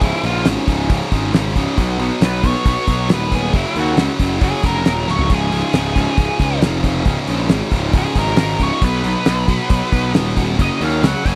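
An octave-fuzz lead guitar solos throughout this driving, sunny classic rock excerpt, its dark, fuzzy tone set against a bright, double-tracked distorted rhythm riff, a growly, punchy overdriven bass and a damped acoustic 70s drum kit with a fat snare and tight kick that rolls through a fill at 5.1 seconds, all captured in a dry, close 1970s-style studio sound.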